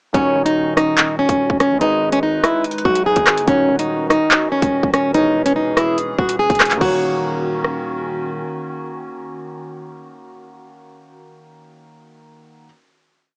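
At 0.1 seconds, a fingerpicked flamenco guitar, a dark grand piano, a distorted 808-style bass and a drill drum kit arrive together. The piece is a cold, menacing half-time drill beat with a home-cassette, small-speaker sound. The acoustic guitar sits up front with a looping, sampled-feeling melody over mellow, spread piano chords that also repeat like a loop. Both carry cassette-tape grit. The electronic kit is up front too, with a hard-clipped kick, metallic skipping hats, fast hi-hat rolls, rim clicks, handclaps and crash, while the saturated 808 pushes long, heavy sub-bass notes that follow the kick and slide in pitch. Underneath, from 0.6 seconds, a warbling, detuned pad with chorus and built-in reverb holds nostalgic lo-fi chords in the background. The hook gives way to a final chord at 6.8 seconds, the pad fades out at 10.3 seconds, and the smooth, vintage piano lingers alone until 12.7 seconds.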